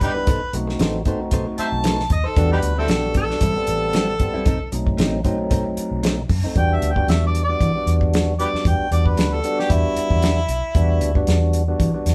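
An overdriven harmonica leads this smoky, soulful straight-eighth soul blues in E minor at 114 BPM, its jazz-style lines carrying light vibrato, tongue slaps and scooped notes, and it takes a solo from 6.6 seconds until it drops out at 11.2 seconds. Beneath it, a fat, percussive tonewheel organ turns through a slow rotary speaker with a touch of grit, while a dark, round, foam-muted fingered bass and an up-front soul drum kit with a fat snare and tight kick hold the groove over chords moving from B7b9 through Em7 and Am7. A clean, compressed, direct-recorded electric guitar adds picked stabs in the background until 6.6 seconds, all heard as a band playing live together in one room with moderate studio reverb.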